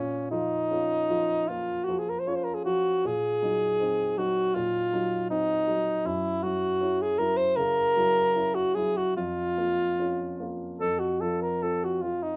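In a rubato 4/4 at around 72-80 BPM, this melancholic, elegiac romantic classical duo in Bb minor, tuned to A4 = 443 Hz, sets a clear alto saxophone up front, carrying the melody with light vibrato in a classical style. A warm grand piano accompanies beneath it throughout, its harmony moving from Bbm through Cm7b5/Bb and Gb7, then to Bbm/F at 9.2 seconds and F5 at 10.8 seconds. Moderate studio ambience gives the pair a modest sense of space in this passage cut from a longer piece.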